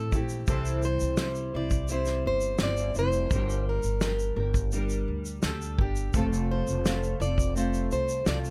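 A straight, easy-going 4/4 groove from a natural country drum kit with a punchy kick, fat snare and shaker underpins this sunny acoustic pop fragment, where a fingerpicked, full-bodied jumbo steel-string guitar with digital delay carries the melody over a small, fresh-sounding double-tracked nylon-string guitar and a woody, growly pizzicato upright bass, moving through C, Gm and F in light reverb.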